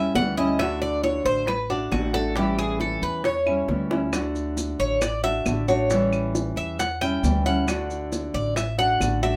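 Sunny and danceable, this 135 BPM Cuban son and guajira excerpt in D major features an up-front, metallic tres with double strings soloing in picked arpeggios over a full-bodied, fingerpicked nylon-string guitar with audible finger squeak and a dark, thumpy pizzicato upright bass, while round, low-tuned bongos played with soft hands keep time alongside woody claves that sit in the background, a drum fill lands at 3.9 s, and grainy, mellow maracas join at 4.1 s as the chords move between D and A7 in a moderate studio reverb.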